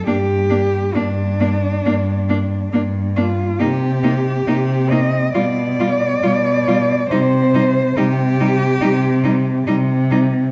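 A dark, reverberant recital-hall sound surrounds this short, lyrical classical passage for four bowed cellos, cut from a longer piece and moving in a slow, rubato 4/4 at 69 BPM. Up front, a rich cello sings the melody with vibrato and expressive portamento, while the bass cello, also up front, anchors the low end with soft attacks, vibrato and its own expressive slides. Between them, a clear, even second line and a smooth accompanying cello set in the background fill the middle as the harmony moves from Gm through Cm7 and G/B to C5, giving the music a warm, lyrical character.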